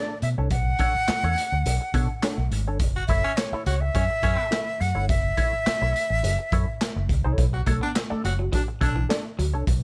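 A breathy, up-front concert flute with vibrato opens this sly, driving funk excerpt in B minor at 105 BPM over a dark, clean guitar drenched in wah and lush chorus, joined at 0.2 seconds by a round, foam-muted fingered bass and a gritty, saturated garage drum kit of handclaps, hi-hat, punchy kick and snare, with a raspy, distant baritone saxophone adding a second line from 3.0 seconds and a twangy, slightly broken-up guitar riff with tremolo arriving at 7.5 seconds as the chords move from Bm9 to F#m7 and back under light reverb.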